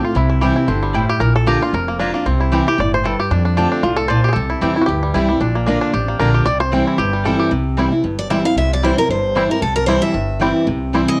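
A twangy, fingerpicked banjo solo opens this driving, virtuosic bluegrass clip at the start, over a bright, full-bodied dreadnought guitar accompaniment, a thumpy, dark gut-string upright bass plucked underneath, and a woody double-strung mandolin adding background stabs across a swung C and Bb progression. The banjo, both guitars and the mandolin carry a home-cassette tape tint, all within light studio reverb. At 8.2 seconds a second picked concert guitar joins the banjo with its own melody up front, finger squeaks audible, before the cut ends at 11.2 seconds.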